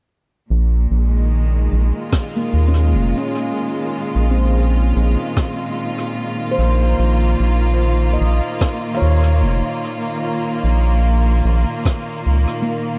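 Ambient dub in Bb minor at 74 BPM with a lightly swung 16th feel, hazy and spacious, cut from a longer piece: a smooth bowed string section with vibrato holds a Bbm9 chord from 0.5 seconds over a round, deep, mellow analog bass sitting up front, while a soft, tape-toned electronic kick and a natural brushed rim click with dub echo enter at 2.1 seconds, and a ringing, meditative steel handpan plays echoing arpeggios with sharp finger strokes from 2.4 seconds in a boxy small room.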